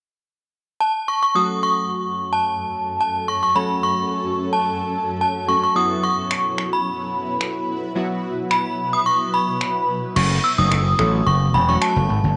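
A cassette-warmed home recording with moderate room reverb opens this confident, driving dance-pop excerpt at 109 BPM in F# dorian. An up-front, chiming FM synth chime carries the melody over chorused retro synth keys with glossy detuned sawtooth and pulse tones, and a shimmering, ethereal pad holds sustained chords through phaser and its own reverb. A layered electronic house kit with crash cymbal and finger snaps arrives at 6.3 s, and a gritty, overdriven slap bass punches in up front at 10.2 s as the harmony, having moved from F#m to Bsus4, returns to F#m.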